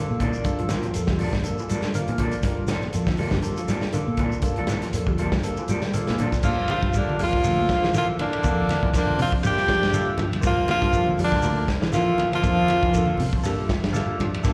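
A breathy, up-front tenor saxophone carries the melody from 6.4 to 13.3 seconds in this funky, hypnotic afrobeat groove, joined by an edgy second tenor and a mellow, distant trombone section tucked into the background. Underneath, a gritty, saturated breakbeat kit with dark cymbals and a tight kick sits alongside a round, foam-muted fingered bass, low-tuned congas and a grainy shekere. A barky, bell-like tine electric piano with phaser comps and adds fills, while two slightly broken-up lo-fi guitars add quiet arpeggios and tremolo stabs over a Gm9 chord, all heard through a venue's PA in a recital hall.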